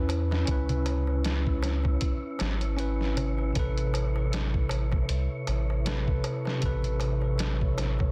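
From the very start of this dark, melancholic trip hop excerpt at 78 BPM, a bell-like tine electric piano sits up front with tremolo and tape echo as it voices a C#m7 that moves to Amadd9 at 3.6 seconds. Beneath it, also from the first moment, a deep, round dub sub bass holds the low end, while a breathy, wind-like tuned noise layer drifts high above with slow attack, long release and its own reverb. At 0.1 seconds a sampler-style drum kit enters with hi-hat, thumpy kick and medium-tuned snare, pitched down, muffled and roughened by vintage 12-bit grit, carrying a gentle 16th-note swing. A clay-shelled darbuka played with soft hands sits in the background, adding an acoustic, live-room touch. The whole is set in a digital ambience with a dense, heavily limited modern master.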